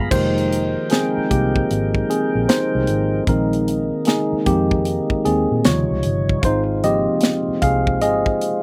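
A swung sixteenth-note feel in 4/4 carries this short, soulful and introspective neo-soul R&B cut, where a worn, slightly out-of-tune tine electric piano with light overdrive sits up front and takes a solo over Fm11, Bb7sus4, Eb13 and Ab6, while a clear tonewheel organ holds sustained chords through a slow rotary speaker, a dark, round, foam-muted fingered electric bass anchors the low end, and a funk drum kit with a high-tuned snare, tight kick, hi-hat and crash brings a natural small-room character to an otherwise dry mix.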